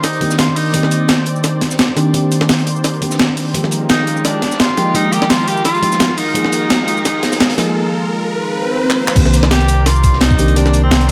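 This liquid drum and bass cut rolls along in 4/4 with a lightly swung sixteenth feel, driven by an up-front, gritty sampler-style breakbeat kit of high-tuned snare, hi-hat, handclaps, cabasa and crash, a thumpy compressed electronic kick, and a darker, saturated acoustic break sitting in the background. The mood is melancholic and lush: a round, soft FM electric piano with a faint noise layer, treated with chorus, phaser and digital delay, carries the harmony through Cm9, Fm11 and Bb7sus4, while a thick, detuned unison pad with slow attack and long release glows above it with sidechain pumping. A clear, roomy tenor saxophone plays a jazz-style solo melody with light vibrato and delay, sounding briefly at the start and then from 3.9 seconds onward. An electronic riser builds in the background from 3.0 seconds, a swell and a drum fill lead into the drop at 9.2 seconds, where a deep, full sine sub bass with an octave layer lands up front on the return to Cm9. 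Light reverb gives the whole mix a soft sense of space.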